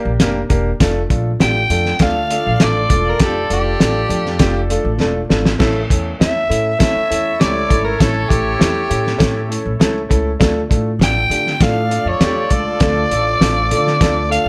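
Driving and passionate, this uptempo 1960s-style soul excerpt sets a muffled, cloth-damped drum kit with a fat snare up front beneath plucked, woody upright bass, a clear upright piano with long sustain, and a tight vintage horn section carrying a second line through tape echo, while a raspy, gritty soprano saxophone takes the melody from 1.4 seconds and a drum fill at 5.0 seconds comes just before the chords move to A.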